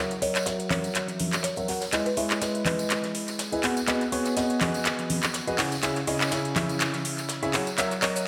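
A clear, intimate baby grand piano riff with audible action noise opens this soulful, bittersweet piano house passage at 123 BPM in C# dorian, swung on the 16ths and moving through F#7, Emaj7/G#, B6 and C#m, as a filter sweep and dub echo wash over it through a build-up and drum fill, while an up-front, tape-warm house kit with metallic hats, handclaps and shaker drives the groove, distant tambourine and congas sit far back, a buzzing, woody marimba plays a background melody from 0.2 to 3.3 seconds before briefly returning at 8.0 seconds, and a very quiet acoustic studio kit adds hi-hat, ride and snare beneath it all in an echo-heavy, small-room mix.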